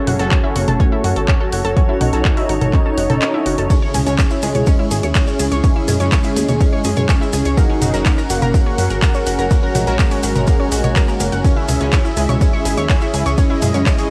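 A straight 4/4 pulse from a punchy, up-front electronic kick and a house kit of handclaps, warm hi-hats, ride and toms drives this dramatic melodic techno excerpt, where a funky, wave-folded analog bass, a round, warbling analog pluck arpeggio, a fat detuned lead in the background, a smooth analog pad and a cloudy granular texture pad all pump under sidechain, while very quiet brassy stabs, grainy distant maracas from 3.7 seconds and a brief electronic swell as the kick drops out around 3.2 seconds join them in a cassette-tape haze, moving from F#m7 to C#m, F# and back to C#m.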